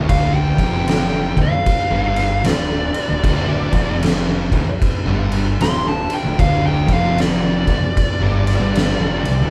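Stoner and doom metal in D minor, this brooding, sludgy excerpt moves at a slow 76 BPM in 4/4 with a swung eighth-note feel, cut from a longer piece and resting on a single D minor chord. Two thick fuzz guitars play the riff low in the mix, one set in the background with distortion and the other very quiet, both dark and picked. Beneath them, a fingered electric bass with overdrive adds a fuzzy, warm low end. A distorted, compressed fuzz lead guitar solos high above from 0.1 seconds to the end, while an oversized, low-tuned acoustic drum kit sits up front with a punchy kick, fat snare and crash cymbal, its sound gritty and saturated in a bright stone room. The band plays live together in one large studio with moderate reverb, giving the whole a heavy, enveloping weight.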